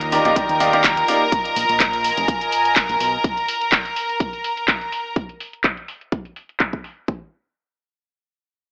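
Euphoric and feel-good, this snippet of piano house at 125 BPM with a light 16th-note swing opens on sustained, earthy violin chords and a soft, floating string texture that pump with the sidechain over Ebmaj9 and Bb7sus4 chords. Beneath them, a round, dark fingered bass runs under a filter sweep until 3.2 s, while handclaps and muffled hi-hats carry on to 6.9 s. A clear baby grand riff with tape echo slips in a moment later, and a punchy, tape-warm electronic kick enters at 0.4 s and carries on to 7.2 s, all heard through a gritty, AM-radio-like hardware sound in a small room.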